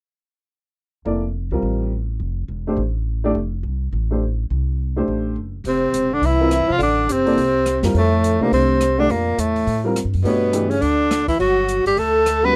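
A dry, close studio sound in the 1970s manner frames this open, searching modal jazz excerpt in F major, swinging at 209 BPM in 4/4. A boxy, slightly detuned upright piano and a dark, thumpy pizzicato upright bass on gut strings begin together at 1.1 s, moving from Fadd9 to Fmaj9 and then Gmaj9. At 5.7 s two breathy tenor saxophones enter: an up-front lead with a soft attack, scooped notes, vibrato and a smooth top, and a clearer, quieter second line beneath it, while a faint, airy drum kit adds hi-hat, a boomy kick, rim click and snare.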